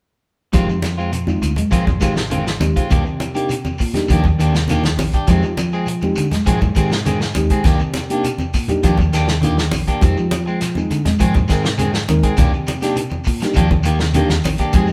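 At 0.5 s the whole band starts together on an intense, funky afrobeat groove in F dorian at 101 BPM, cut from a longer piece and alternating between Fm7 and Cm9. An up-front soul drum kit with a tight kick and rolled-off top sits over a dark, round fingered bass. Bright, hard-handed congas and a grainy shekere in the background fill out the percussion. A reedy electric piano carries the accompaniment, a clean semi-hollow guitar plays background arpeggios, and a slightly broken-up guitar adds stabs through spring reverb, all in a light, live-room ambience.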